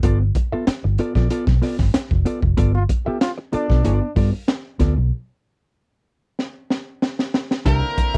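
A dry, close 1970s-style studio sound frames this playful funk excerpt, built on a crunchy breakbeat kit with a punchy kick and high-tuned snare, a round, foam-muted fingered bass up front, and a clean, compressed hollow-body jazz guitar accompanying on a G9 chord. A clear trombone adds a brief second line at 2.7 seconds, and a break from 5.1 seconds sets the chords aside, closing with a drum fill. At 7.7 seconds the harmony moves to C9 as an octave-fuzz lead guitar sounds a single distorted note over thick, overdriven tonewheel organ chords turning through a slow rotary speaker.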